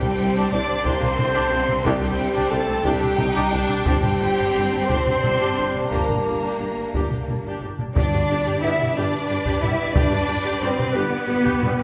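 Adventurous and heroic, this short cut from an epic orchestral film score in a straight 6/8 sets lush, warm violins on the melody over a clear, focused second violin line, expressive viola with portamento, bowed cellos and dark background double basses, with mellow, distant French horns and dark trombones holding sustained chords above a very quiet tuba, hard-stick taiko playing throughout, a hollow flute joining at 7.9 s and a brief timpani entry at 8.0 s as the harmony turns from Csus2 and Gm to G major, all bathed in a wet hall reverb.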